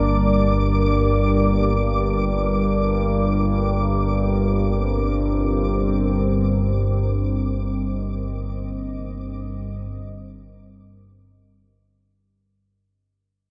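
Dark and desolate, this free-time dark ambient drone excerpt sets a chorused analog drone, warm and evolving with pulse-width modulation, up front beneath a deep, warbling, detuned pad moving from Gm to Cm7/G and a grainy, flickering granular texture high above, all soaked in a huge dreamy reverb as the pad and texture fade out and the whole recording fades from 6.2 seconds.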